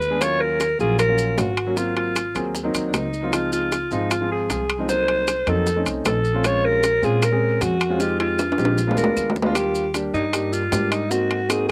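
Recorded outdoors with very little reverb, this excerpt of driving, sophisticated Afro-Cuban jazz sounds close and dry, cut from a longer piece in a straight 4/4 feel. A raspy, growling alto saxophone sits up front and carries the melody as a jazz-style solo with vibrato, its gritty tone carrying a distant, roomy quality of its own. Beneath it, a warm grand piano comps through rich harmony such as Ebm9, Ab13, Dbmaj9 and Bbm9, while a dark, woody upright bass with steel strings is plucked pizzicato. The percussion is led by ringing metal-shell timbales, joined by tight, high-tuned bongos struck with hard hands and very quiet claves, with grainy, saturated maracas adding a compressed, mellow shimmer. A drum fill from 8.0 to 9.6 seconds leads into a new section, where the harmony moves to Ebmaj9 and then Ab7.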